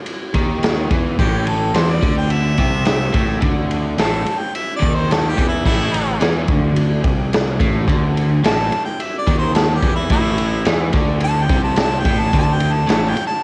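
A clear harmonica with light vibrato takes the solo from 1.2 seconds, sounding distant and roomy through a distorted edge and cassette tape in this swaggering, raw garage rock excerpt in straight 4/4. An overdriven, double-tracked electric guitar riff with spring reverb and a picked fuzz bass hold the low end, while an up-front, gritty drum kit drives with a punchy kick, a medium-tuned snare, and crash and ride cymbals under a rolled-off top. The whole excerpt has the dry, saturated character of a home cassette recording.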